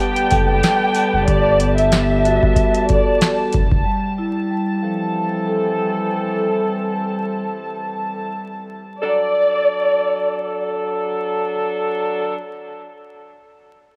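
Soulful and warm, this boom-bap hip-hop excerpt swings at 93 BPM over Gmaj9 and Fmaj9 chords, with a booming analog drum machine (deep kick, crisp snare, metallic hats) up front and a round, deep analog bass until the beat drops away at 3.8 seconds, while faint jingly sleigh bells sit in the background. A dark, expressive violin section carries the melody with vibrato and portamento, returning at 9.0 seconds over a D/F# chord, while a ringing soft-mallet vibraphone, floating symphonic strings and punchy horn stabs with tape echo fill out the harmony, the horns lingering to 12.4 seconds. The melodic parts have the filtered haze of cassette tape, and the whole piece sits in a home-recorded room with vinyl crackle.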